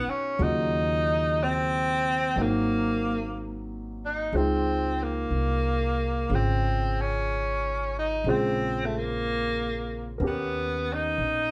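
A trio plays live together in one room, framed by a moderate studio reverb, in this smoky, melancholic jazz ballad fragment, cut from a longer piece, that moves at a slow 61 BPM in 4/4 with a gentle swing in E-flat minor. Up front, a breathy tenor saxophone carries the melody in a low, subtoned voice with soft attacks, scooped notes and vibrato. Behind it, an intimate concert grand with audible action noise and deep bass voices chords from Ebm9 through Dbmaj9 to a closing Eb7b13, while a woody, thumpy pizzicato upright bass anchors the low end.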